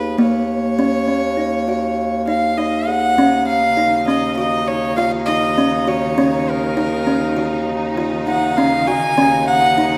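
An up-front solo violin with a nasal, gut-string tone and airy bow carries the melody in this pensive, restless piece of contemporary chamber music in 5/4. A buzzing, woody kalimba plays arpeggios beneath it, while a clear bass clarinet holds a low Eb2 bass line. At 3.2 seconds a bright, intense studio string section enters with sustained chords, all set in the spacious wash of a scoring stage reverb.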